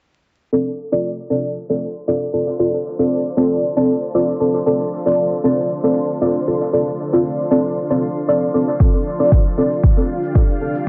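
Dub techno at 116 BPM in D minor, hazy and nocturnal, this short cut from a longer piece opens at 0.5 seconds on a deep, nasal chord stab punching out a Dm7, its dark tone treated with chorus, phaser, dub echo and sidechain pumping under a filter sweep. A cloudy, detuned granular pad drifts in behind it at 2.3 seconds, blurred by its own reverb and pumping softly in the background. At 8.8 seconds a layered, tape-warm kick arrives up front alongside a very quiet, grainy tube shaker, all set in a moderate spring reverb with vinyl crackle and a low-pass filter dulling the top end.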